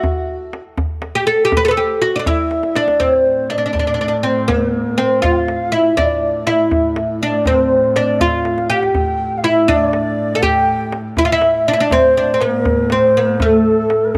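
A bright, woody oud carries the melody up front, its plectrum-plucked double strings ringing across a stately Persian modal piece in dastgah shur on A, moving at 81 BPM in a straight 6/8. Beneath it a deep tombak played with hard hands sits close and dry, marking the pulse and adding short drum fills at 2.5 and 8.5 seconds. A low, end-blown ney enters at 2.3 seconds as a distant second line, airy and tongued with vibrato. From 3.0 seconds a single bowed double bass holds a clear, focused drone on A with a smooth top, as the music settles from its opening into the main section. At 9.4 seconds a breathy, reedy bansuri joins the ney's register in the background with a soft attack and straight tone, and light reverb lends the whole excerpt a small-room ambience before it cuts off mid-piece.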